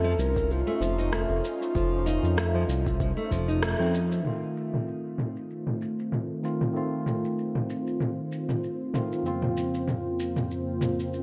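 Organic downtempo at 96 BPM with a meditative, mystical air, this brief excerpt opens with a breathy, flute-like synth lead carrying the melody over fingerpicked nylon-string guitar arpeggios, a smooth sawtooth bass and a detuned, chorused analog pad in the background, before a bright tine electric piano with 12-bit sampler grit and sidechain pumping takes over at 4.2 seconds alongside a tape-warm deep house kit whose filter sweep runs to the end, all set in an echo-heavy chamber reverb.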